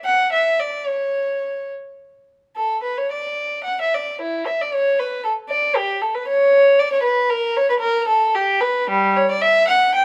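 Close, detailed microphones and a light reverb frame this brief excerpt of a baroque-style suite movement in 6/8 for unaccompanied violin. A single period-style player bows the whole passage, from 0.0 to 10.0 seconds, with a dark, nasal gut-string tone that sits up front, ranging from G3 to G5. The phrasing is rubato, and the opening idea returns at 2.6 seconds, giving the music a flowing, radiant character.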